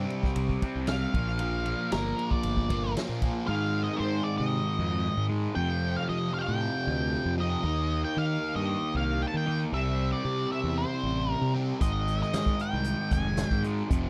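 An octave-fuzz lead guitar carries the melody from 0.9 seconds, its dark, distorted tone picked up front and trailed by a slapback echo in this hypnotic, kaleidoscopic slice of psychedelic rock at 115 BPM in a straight 4/4. Beneath it, a bright, double-tracked fuzz guitar drives the riff through a phaser, compressed and sitting close to the listener, while a fingered electric bass adds a round, overdriven fuzz underpinning. A vintage acoustic drum kit with a fat snare, punchy kick, hi-hat and ride cymbal plays in two stretches, from 0.1 to 3.3 seconds and again from 11.8 seconds, its top end rolled off. The harmony moves from C5 and Bb through Ab5, Fsus2, Eb5 and C before returning to Ab, with a new section arriving at 3.5 seconds. The sound is dry and close, in the manner of a 1970s studio, and the passage is cut from a longer piece.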